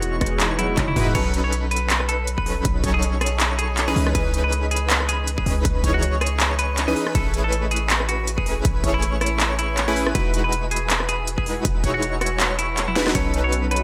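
A bright, lush future bass drop, cut from a longer piece, pumps under sidechain compression with a light reverb over the whole mix. It moves at 160 BPM in 4/4 with a half-time feel and a gentle swing on the 16ths, set in E major and cycling through rich ninth chords from Emaj9 and B9 to C#m9 and Amaj9. A clean, compressed semi-hollow electric guitar carries the melody through spring reverb and digital delay. Around it sit a punchy, detuned supersaw stab riff with a filter sweep, an airy, dreamy chorused lead playing soft arpeggios in the background, and a barky, gritty overdriven tine electric piano with phaser that appears only at the very start and again near the close. A deep, boomy 808-style bass and an up-front trap kit with a sharp snare, crisp hats, handclaps, rim clicks, toms and crash drive the groove, joined by a layered, tape-warm electronic kick and a drum fill at 0.6 seconds. 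From 2.4 seconds a very quiet, shimmering, ethereal pad adds sustained granular chords high above.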